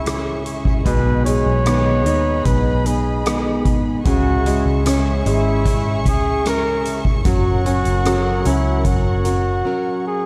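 A dark, warm small-room sound frames this emotional, longing pop ballad, cut from a longer piece, where a smooth flugelhorn with light vibrato carries the melody over a brilliant concert grand piano and a sul tasto string section holding sustained chords. A fingerpicked jumbo steel-string acoustic guitar plays arpeggios in the background, while a round, foam-muted electric bass and a soft-mallet drum kit with a boomy kick, hi-hat and rim click hold the ground. The chords move from C#m through G#m/B and back to C#m before reaching F#; the drums stop at 9.4 s and the bass at 9.6 s, leaving a brief break at the close.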